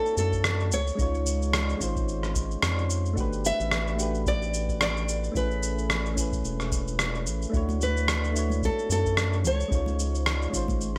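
A swung sixteenth-note groove at 110 BPM in 4/4 drives this smooth, warm sunset chillout piece in D major, built on a deep electronic kick, a gritty, up-front cabasa and rim click in gated reverb, and a round, wave-folded analog bass, with background congas arriving at 7.7 s. Over soft, chorused electric-piano-like synth keys moving through major-ninth chords, a fingerpicked nylon-string guitar carries the melody through digital delay until 10.5 s. The bright 1980s-style digital production sits in a moderate plate reverb, and the clip is cut from a longer piece.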